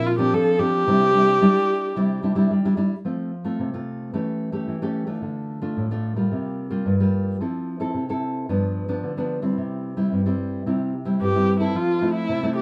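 A dark, woody bowed viola with vibrato and portamento sings up front over a fresh-stringed, fingerpicked classical nylon-string guitar from the start of this joyful, playful samba at 110 BPM in F major; the viola falls away at 2.5 seconds while the guitar carries on through chords such as Fmaj7, G7 and C, and the viola returns at 11.2 seconds for the close of this cut from a longer piece, all in a moderate studio ambience.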